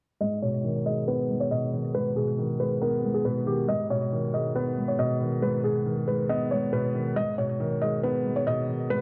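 A felt-muted upright piano carries a soft, intimate melody up front through a low-pass filter and tape echo, over a mellow, long-sustaining dark baby grand piano accompaniment on a G#m chord, in a menacing, hard-hitting hip hop excerpt at 138 BPM in a half-time feel in G# minor, tuned to A4 = 444 Hz, with a filter sweep running from 0.2 to 9.0 s and a moderate recital hall reverb framing the warm production.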